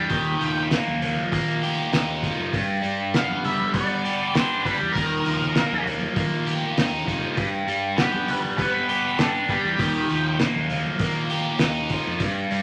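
Hypnotic and hazy, this psychedelic rock excerpt moves at 99 BPM in a straight 4/4, swaying between Ebadd9 and G. A bright, double-tracked overdriven stack guitar sits up front with a phaser-tinged riff over a round, fuzzed fingered bass and a muffled, cloth-damped drum kit with a fat snare and tight kick, while soft-handed congas enter at 0.9 s from a distant, large-room space. A dark octave-fuzz lead guitar carries the melody through wah and distortion until 10.4 s, all wrapped in moderate studio ambience and vinyl crackle.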